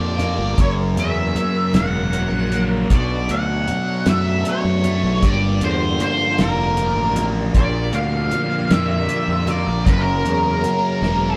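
Psychedelic rock in a slow, hypnotic and dark 6/8, where an up-front octave-fuzz lead guitar sings a melody through wah over a bright, double-tracked fuzz guitar riff with phaser, a round overdriven fingered bass, a clean tonewheel organ holding sustained chords in the background through slow rotary speaker and chorus vibrato, a dry, cloth-damped drum kit with a fat snare and tight kick, and very quiet low-tuned congas, all playing live in a stone room as the chords move from A#6 through F#, Bm7 and Gm7 to a drum fill at 11.0 seconds.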